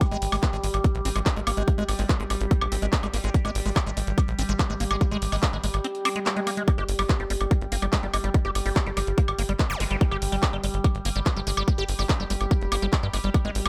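A hypnotic psychedelic trance excerpt at 144 BPM opens with a heavy, up-front electronic kick, a driving sawtooth sequencer bass with a tight filter pluck and tube saturation, and a squelchy, resonant acid bass riff colored by phaser, tape and delay, while a sustained drone with moving overtones, chorus and reverb holds an Abmaj7(no3) chord, both pumping against the kick. A layered drum kit adds bright hi-hats, handclaps and woodblock in a small-room sound. The kick drops out from 5.8 to 6.7 seconds as a background swell and zap enters at 6.0 seconds and returns briefly at 9.7 seconds, and from 6.7 seconds the chord gives way to an unharmonized stretch as the parts carry on.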